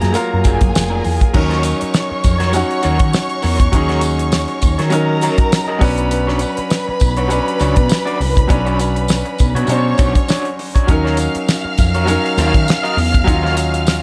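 A lush, smooth 1970s-style soul groove opens at once with a dry, damped drum kit up front, its fat snare, tight kick, hi-hat and crash cymbal joined by a growly, round fretless bass, a brilliant grand piano and distant, expressive bowed strings carrying a second line with vibrato and portamento. A jingly tambourine comes in at 0.1 s in the background, and a twangy, slightly broken-up electric guitar sits back in the mix playing a picked riff through tremolo. The chords move from F#maj9 to D#m7, Bmadd9 and back to D#m7, and the nearly reverb-free sound comes from a passage cut from a longer piece.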